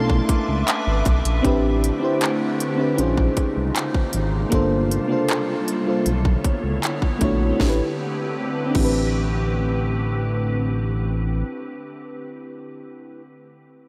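A straight 4/4 trap groove at 78 BPM, with a hard-clipped kick, sharp snare, crisp hi-hats, handclaps and crash cymbal up front from 0.1 s, drives this longing, late-night contemporary R&B excerpt, where a round, chorused FM electric piano plays minor eleventh chords such as Bm11 and Am11 over a dark, gliding sawtooth synth bass and a glassy, ethereal FM pad that pumps with sidechain, in a dreamy mix soaked in huge ambient reverb.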